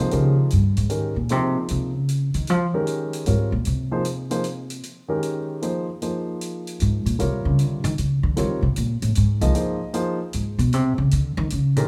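A swung 3/4 pulse at 153 BPM drives this hypnotic, open modal jazz fragment in Eb mixolydian, resting on a single Eb13sus4 chord. The woody, pizzicato upright bass takes the solo up front, pausing between 4.8 and 6.8 seconds before resuming, while a warm grand piano with short sustain comps up front alongside it and a natural acoustic hi-hat ticks softly beneath. A moderate recital hall reverb gives the whole a spacious concert-hall air.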